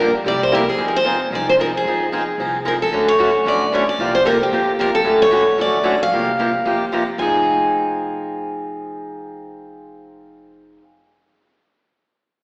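A brisk swung pulse in 4/4 drives this bittersweet piece of gypsy jazz, cut from a longer performance, with a crisp, dreadnought-bodied steel-string guitar up front carrying the melody. Beside it, a boxy swing-style acoustic guitar with fresh strings and audible finger squeak plays the chords, shifting from C7 and Fm7 to Dmaj7 and C7sus4 at 2.9 seconds, while a woody, thumpy upright bass with gut strings sits dark and distant in the background. The whole trio rings in a wet, churchlike hall reverb filtered through a thin AM radio sound.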